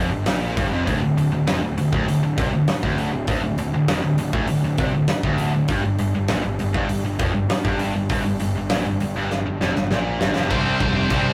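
A rough rehearsal-room recording with warm saturation and a tight, wet booth ambience frames this short, dark and relentless heavy metal excerpt, cut from a longer piece, at 100 BPM in straight 4/4. Two bright, high-gain distorted guitars sit in the background playing riffs, one reaching from D2 up to C5 and the other from D2 to C4, over a punchy, overdriven fuzz bass picked low in the register. Up front, a big acoustic rock kit with bright cymbals, a medium-tuned snare and a punchy kick drives the music from 0.3 seconds, using crash, hi-hat, kick and snare. The harmony moves between Fsus24 and Dm, and a drum fill from 9.3 seconds leads into the change at 10.5 seconds. There a scooped, double-tracked high-gain guitar enters up front on a C5 chord, adding a hollow edge to the final moments.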